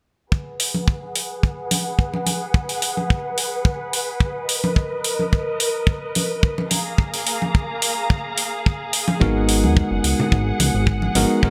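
Sensual and sleek, this nu-disco excerpt in G# dorian moves at 108 BPM with a light 16th-note swing, as dark, veiled con sordino strings hold filter-swept chords from G#m7 through Bmaj7 and Fmadd11/Bb over a tight, dry kick, metallic electronic hats and vintage congas, until a bell-like tine electric piano with digital delay and a fat, detuned analog bass join at 9.2 seconds, all in bright 1980s-style digital production with a lush hall reverb.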